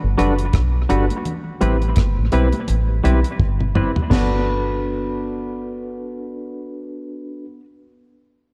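A round, foam-muted fingered electric bass sits up front in this tender, romantic lovers rock reggae excerpt, moving over a swung groove from Gmaj7 to Am9. A dry, dark drum kit with a high-tuned snare and tight kick plays a fill at 3.4 seconds and drops out shortly after, along with bright, thin-skinned congas in the background. A barky, lightly overdriven tine electric piano with fast tremolo and clean hollow-body guitar stabs carrying tape echo continue to about 7.7 seconds, all in a dark production with light reverb.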